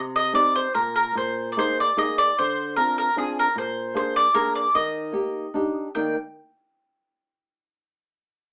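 Italian folk in the serenade tradition, this short fragment of a longer piece feels romantic and lively, moving in 3/4 at 150 BPM with a loose, rubato sway in E-flat major. A mandolin carries the melody from 0.2 seconds, its picked double strings giving a mellow, round voice that sits up front. Beneath it, a thumb-plucked flamenco guitar supplies warm accompaniment across a broad register, present from the first moment to 6.2 seconds and quieter than the mandolin. The harmony moves from C minor through a brief chordless moment, then Bb7sus4, Dm7 and Bb7 before settling on Ebmaj7, and a bare Eb5 opens the closing section at 5.9 seconds. A modest small-room ambience surrounds both instruments, and the whole recording carries the narrow, boxy colour of an AM radio broadcast.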